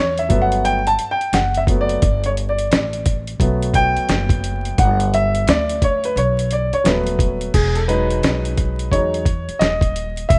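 An intimate upright piano with audible action noise and long, smooth sustain leads this cool, relaxed jazz-hop piece from the start over a dark, woody pizzicato upright bass on gut strings, joined at 0.2 seconds by a gritty, compressed, tape-toned sampler-style soul drum kit with a thumpy kick, medium-tuned snare, hi-hat and crash, the swung groove sitting in a rough home-demo mix with vinyl crackle and light small-room reverb as the harmony moves from Gmaj9 to Emaj9 at 7.5 seconds.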